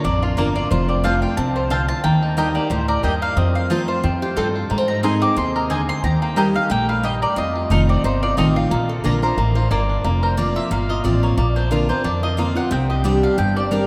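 A swung, driving four-beat pulse carries this rustic bluegrass excerpt, anchored by the thumpy, woody pizzicato of an upright bass on steel strings. Up front, a bright, full-bodied jumbo acoustic guitar picks the accompaniment, while a mellow, twangy banjo played with fingerpicks adds percussive arpeggios. A warm mandolin picking on double strings carries the melody, and a second mandolin adds stabs throughout. From the background, a metallic, nasal lap resonator guitar played with slide and fingerpicks adds a brief second line at 4.2 seconds and again at 8.9 seconds. At 10.0 seconds the music moves to a new section built on suspended and added-tone chords, where a mandolin solo takes over, all of it washed in the long reverb of a vast, echoing cathedral.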